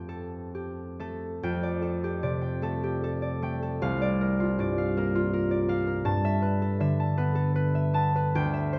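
Bathed in the wet reverb of a recital hall with a 1.5-second decay, this wistful, gentle 8.8-second fragment of a classical solo piece features an up-front concert harp, ringing and fingerpicked across a range from C2 to A5, tuned to A4 = 441 Hz, drifting through a rubato 6/8 with uneven beats as its extended harmonies move from Fmaj9 and F69 to C9sus4 at 3.8 seconds and G69 at 6.1 seconds.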